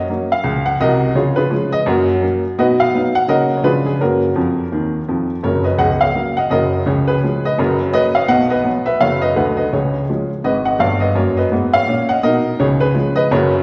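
A woody upright piano opens this swinging, exuberant stride jazz excerpt and carries it as the sole voice from start to finish, its part ranging from the deep bass up into the upper middle register. The swung feel gives the eighth notes a buoyant lilt, while the harmony moves through familiar turnarounds between the home chord, its dominant seventh and the subdominant, with a flattened-ninth dominant adding bite. A short piano fill between 4.4 and 5.4 seconds rounds off the first phrase before the opening strain begins again and runs until 13.6 seconds. The instrument sits up front with an intimate, natural character, short sustain and audible action noise from the keys and hammers. Around it, the reverberant space of a church or concert hall adds a lingering 1.6-second tail.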